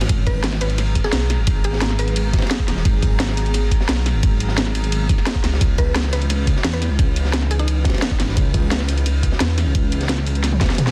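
A melancholic, rolling liquid drum and bass excerpt in G# minor at 174 BPM opens on a quiet, glassy, ethereal FM pad pumping in the background, a deep, rumbling detuned saw bass with tube saturation up front, a cracking layered electronic kit, a dark, rolled-off acoustic breakbeat kit and a gritty, pitched-up thumpy kick, all moving from G#m9 to C#m9 at 5.4 seconds, while a woody, round mallet-like pluck with chorus and digital delay surfaces briefly from 0.3 seconds and again from 5.8 seconds before a drum fill closes at 10.4 seconds in a dense, heavily limited, fairly dry mix.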